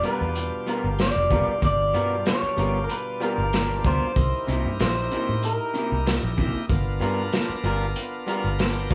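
A twangy, slightly broken-up lead guitar through a small old amp carries the melody for the first 6.0 seconds of this swaggering, laid-back soul blues excerpt at 95 BPM in G mixolydian, over a second, darker lo-fi guitar playing stabs, a shouting tonewheel organ through a slow rotary speaker with overdrive that adds a fill at 8.3 seconds, a round foam-muted fingered bass, and a crunchy, gritty breakbeat kit with a tight kick and rolled-off top, all captured as a band playing live in one room with light reverb over G7#9 and C7#9 changes.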